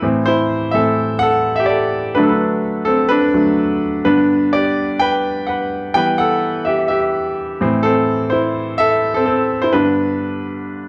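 Swinging lightly on sixteenths at 127 BPM in 4/4, this uplifting, anthemic pop excerpt in G major features a solo bright concert grand piano, brilliant and up front with deep bass, short sustain and a slapback echo, moving through Am, D, G, Em, Am and G in a dry, close 1970s-style studio sound.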